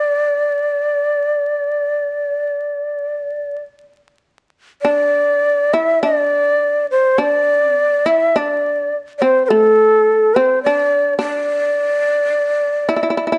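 Calm, austere Japanese chamber music in slow, rubato 4/4 at 49-54 BPM, tuned to A4 = 437 Hz and cut from a longer piece, where an airy, end-blown bamboo shakuhachi carries the tongued, vibrato-touched melody up front while a buzzing, fretless, plectrum-plucked shamisen sits lower in the mix with a powerful, percussive second line, both playing throughout, shifting to a new section at 4.8 s, all set in a dark, warm production with moderate spring reverb, small room ambience and vinyl crackle.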